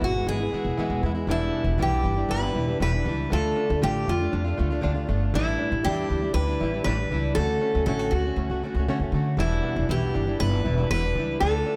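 An echo-heavy mix in a small, lightly reverberant room carries this sunny, carefree pop passage at 118 BPM in a straight 4/4, tuned slightly low to A4 = 436 Hz. A full-bodied, up-front jumbo steel-string acoustic guitar picks the melody, while a second plugged-in jumbo acoustic fingerpicks the accompaniment; both guitars are soaked in dub echo. Beneath them, a very quiet, twangy, plunky open-back banjo adds mellow arpeggios, and a woody pizzicato upright bass sits up front before dropping out at 11.6 s, all moving through Em7, Dm, A7sus4 and Dmaj7.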